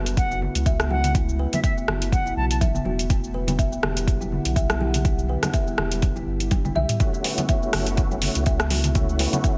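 A woody, fingertip-plucked kalimba spins mellow arpeggios through vintage 12-bit sampler grit and dub echo in this earthy, hypnotic afro house excerpt, while a bright, reedy concert flute adds a short vibrato melody that ends at 2.6 seconds. A deep, up-front electronic kick and a produced afro-pop kit of metallic hi-hats, rim clicks, shaker and toms drive the swung groove, with a drum fill at 6.5 seconds, as soft-handed congas ring in the background and a round sine sub bass pumps underneath. A dark, detuned, ethereal pad drifts behind on ensemble chorus and reverb across F#m7 and Em9 chords, and a lightly overdriven tonewheel organ with key click and slow rotary speaker joins with stabs at 7.0 seconds.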